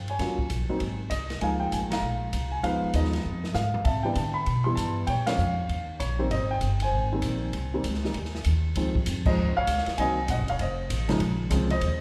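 A baby grand piano carries the melody up front with a natural tone over a woody, thumpy pizzicato upright bass in this playful, warm jazz piano trio excerpt, swinging briskly at 196 BPM in 4/4 and starting in Ab major. A quieter open drum kit with dark cymbals, a boomy kick and a rolled-off top adds a fill at 3.2 s. Band accents punctuate the tune at 1.9, 5.2 and 9.2 s as it shifts to Db major at 8.8 s, all set in a moderate recital hall reverb.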